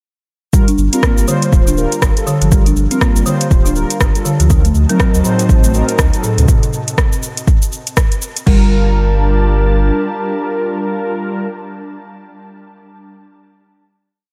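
A four-on-the-floor electronic kick sits up front at 121 BPM in 4/4, with a 16th-note swing driving this short, hypnotic afro house piece in G minor, while programmed metallic hats, shaker, rim click, crash and a backbeat from a tape-warm afro-pop kit fill in around it. A soft-mallet folk marimba, woody and rustic, repeats a 16-step arpeggio sequence from 0.5 s, passing through a low-pass filter sweep until 6.5 s and trailing dub echoes, all under sidechain pumping. A round sine sub bass plays dotted rhythms beneath it, and mellow, detuned sawtooth synth brass adds dark, chorused stabs with vibrato in drop-2 voicings. An ethereal, warbling pad fades in at 4.8 s with slow-attack sustained chords bathed in ensemble chorus and its own reverb. The harmony moves from Gm7 to D7b9b13, and after the groove ends around 8.5 s, the brass and pad hold a final Gm7 as the sub bass lingers until about 9.9 s, closing a lightly reverberant, echo-heavy mix.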